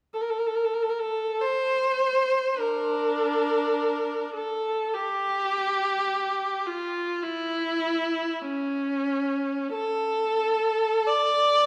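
Rubato phrasing sets the pulse free over a slow 4/4 at roughly 43-53 BPM, letting each bowed line breathe at its own pace. This classical, expressive fragment, cut from a longer piece in D minor, carries a meditative, yearning mood. A single viola plays alone from 0.1 to 11.7 s, moving between C#4 and D5 with a clear, focused tone shaded by vibrato. The instrument sits up front yet carries a distant quality, as if heard from a few rows back. A moderate concert hall reverb, about 2.0 s long, lingers behind each note and lends the solo line a spacious, contemplative glow.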